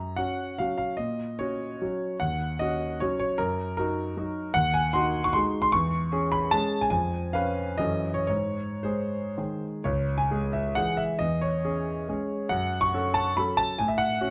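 Classical romantic triple-time dance in 3/4 for solo concert grand piano, rustic and proud, moving with free rubato between 105 and 164 BPM and settling into C# minor from 4.6 s, its dotted rhythms rendered with a warm, intimate, up-front tone, deep bass and audible action noise through close, detailed microphones and light reverb, before a new section begins at 9.9 s in this brief fragment cut from a longer piece.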